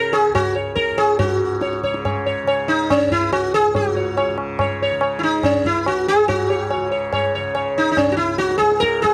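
Longing and solemn, this Hindustani classical passage in a three-beat metre is cut from a longer piece. A plectrum-plucked sitar sits up front with the melody, its buzzing tone haloed by shimmering sympathetic strings, while a softly plucked tanpura hums a low, warm drone beneath it. A high-tuned tabla with a short ring joins at 0.1 seconds, all captured in a close, dry 1970s-style studio sound with light reverb.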